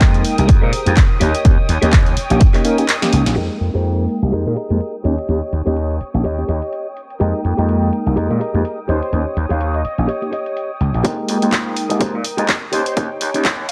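A swung 125 BPM groove in F minor drives this nostalgic, funky filtered disco house clip, with a punchy, up-front electronic kick that drops out at 2.5 seconds and returns at 11.0 for a build-up, a tape-warm analog drum machine supplying handclaps, hi-hat and snare, and a barely audible tube shaker. An overdriven, bright slap bass anchors the Fm11 to Eb7 vamp beneath a mellow tine electric piano with phaser, a clean, picked guitar riff and a dark, woody violin section holding distant bowed chords, all pumping against the kick under filter sweeps. At 8.9 seconds a bold, fat, detuned synth brass melody enters in the background with chorus and tape echo, and the dry, gritty cassette sound adds to the retro feel.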